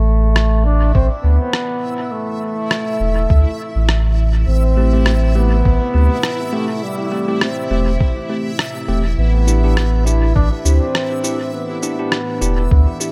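A 102 BPM pulse in 4/4 swings lightly on the sixteenths, with a muffled, thumpy electronic kick sitting in the background from 0.9 seconds and a pitched-down rim click and shaker, both sampler-style and tape-tinged, the clicks trailing dub echo. This is hazy, spacious ambient dub in A minor, a short cut from a longer piece, resting on Am7 and moving to Em7 at 9.2 seconds. A deep, round sine sub bass sits up front throughout, while a distant, roomy trombone carries the melody in a classical solo style, its phrases spun out through dub echo. An airy, breathy pad holds sustained chords in the background with a chorused, detuned shimmer, and a reversed, granular texture swells in a bright, dreamy haze. From 4.8 seconds a bell-like tine electric piano adds clean, direct stabs roughened by 12-bit sampler grit and echoed into the light digital ambience, as a fade-in on an analog synth pad runs through the whole passage.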